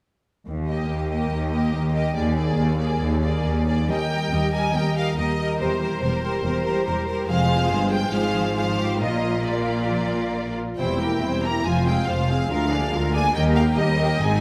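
Classical and dramatic yet cheerful and graceful, this brief fast romantic orchestral passage with a rubato feel sets clear, intense violins on the melody over a distant, lush second violin line, a smooth background viola accompaniment, an even cello and rich double bass foundation, and ringing thumb-plucked harp arpeggios, all within a wet recital hall reverb.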